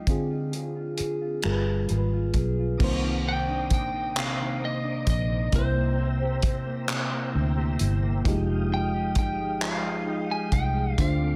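Yearning and late-night, this slow six-eight R&B piece at 44 BPM in C minor pairs a bright, twangy, lightly driven lead guitar melody with a dark, clean second guitar line and a mellow FM electric piano, all three treated with analog delay, over a round, foam-muted fingered bass and an up-front soul drum kit with tight kick, finger snaps and handclaps, while a smooth tonewheel organ with key click and slow rotary speaker enters at 2.8 seconds as the harmony moves from Dm7b5 and G7b9 to Cm9, all in an echo-heavy small room.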